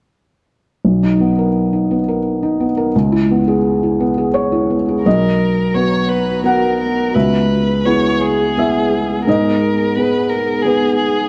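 Swaying freely in a rubato three-beat metre, this neoclassical piece for piano and strings opens with an intimate, hopeful mood. A felt-muted upright piano, soft and mellow, sits up front and carries the accompaniment from 0.8 seconds, moving between Bmaj7 and C#m7. At 5.0 seconds a single bowed violin enters with the melody, its rich tone shaped by vibrato and portamento for an expressive, singing line. Shortly after, at 5.7 seconds, a glassy FM pad rises slowly in the background, sustaining ethereal chords with ensemble chorus, a phaser and its own reverb. The harmony turns to G#madd9 near the close of this fragment from a longer piece. A moderate concert hall reverb and a dark, warm production bind the parts into a gentle, enveloping space.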